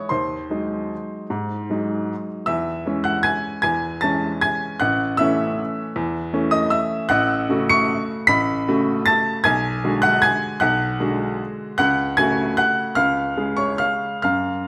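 A clear, woody upright piano carries this classical waltz alone, sounding present, polished and up front across its full reach from A1 to C#7. The mood is bittersweet and elegant, in 3/4 with a rubato feel that lets the tempo drift between 125 and 166 BPM, and the key settles into F# minor from 7.1 seconds. Chords move from G#7/D# through C#m/E and A, then F#m/A, G#m7b5/B and F#m/C#, coming to rest on C# near 13.0 seconds. A moderate recital hall reverb lends the instrument a graceful sense of space. This short passage, cut from a longer piece, runs 14.7 seconds.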